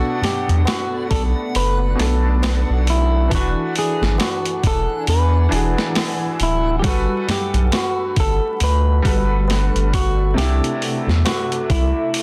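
Coated in vinyl crackle and light reverb under a dense, heavily limited master, this brooding, dark trip hop excerpt moves at 68 BPM in B phrygian with a swung 16th-note feel, cycling through Bm7, E9, Gmaj9 and C69. A round, deep analog bass and a gritty, pitched-down boom bap sampler kit with a thumpy kick and high-tuned snare sit up front, while a low-tuned tabla, a reversed, granular swelling texture and a moody, warbling chorused pad that enters at 0.9 s hover in the background. Over a bright, woody upright piano carrying harmonic tremolo, 12-bit sampler grit and tape echo, a clean, fingered hollow-body electric guitar plays the melody through its own tape echo.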